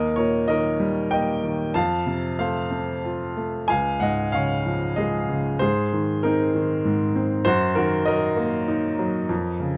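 Dark, intimate production with light reverb places a clear baby grand piano up front, its natural tone carrying long sustain and audible action noise. This lyrical classical solo moves in a rubato three-beat feel through a sunny, hopeful harmonic path, reaching Dbadd9 at 3.7 seconds and Ebm/Gb at 7.5 seconds. The fragment, cut from a longer piece, spans a broad register from deep bass notes to clear upper tones.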